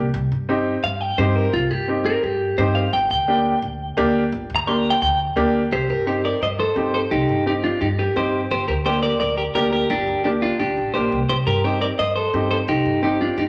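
Passionate and driving, this cumbia clip moves in a straight four-beat feel, carried by a slightly detuned, worn upright piano accompaniment and a woody pizzicato upright bass. A bright, twangy clean electric guitar with spring reverb enters up front at 0.8 seconds, taking a solo until 5.7 seconds before continuing the melody to the close. The whole band sits in a moderate large-studio reverb, with the harmony rocking between minor chords.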